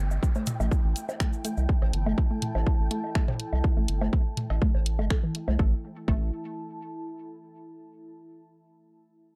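Dry, dark and warm, this short cut from a longer minimal techno track moves at 123 BPM in a straight 4/4 with a hypnotic, quirky mood. A punchy, layered electronic kick drum sits up front beside a round, mellow analog bass in the low register, with the bass pumping against the kick. Electronic bongos, toms and cowbell add an analog percussive layer, while a house drum kit supplies finger snaps and hi-hat, and a bright, grainy acoustic cabasa and a background downlifter appear only in the opening 1.7 seconds. A juicy, squelchy resonant blip pluck carries the riff with chorus, delay and vintage 12-bit sampler grit, and a flickering granular texture hovers faintly behind it. A deep, moody ambient pad with warbling chorus and reverb underlies the whole passage and is heard alone from 6.3 seconds until the cut ends at 7.5 seconds.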